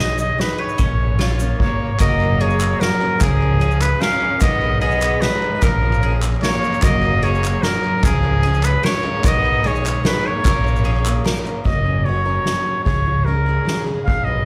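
In a straight 3/4 at 149 BPM, this anthemic indie folk excerpt in F# major builds its arrangement as a soft-mallet drum kit with dark cymbals and a boomy kick joins at 0.4 s, while a round, amped electric bass sits up front alongside background tube shaker, hollow group handclaps from 2.0 s and a nasal, earthy bowed cello line from 1.6 s. A vintage-toned solo trumpet carries the melody up front with slapback echo and analog delay, over a bright plugged-in picked acoustic guitar with finger squeak and a double-strung mandolin playing arpeggios until 11.6 s. At that point a full-bodied fingerpicked jumbo acoustic guitar enters in the background, all heard through a venue PA with club reverb.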